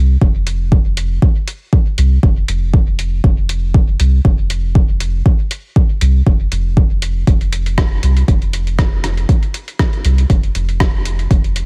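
A soft, round dub sub bass opens the recording, sustained and up front, moving between F1 and C2 with a gentle tube-saturated edge and a sidechain pumping that makes it breathe in the pulse of the track. At 0.2 seconds a deep electronic kick drum arrives, layered and overdriven, sitting prominently at the front of the mix as the loudest element. By 0.5 seconds a lo-fi sampler-style kit joins with hi-hat and rim click, pitched down, compressed and muffled, tucked low beneath the kick. This is dub techno at 119 BPM in 4/4, with a light swing on the sixteenths that loosens the groove into a hypnotic, meditative loop. The dry sound carries little reverb, and the passage is cut from a longer piece, ending at 11.7 seconds.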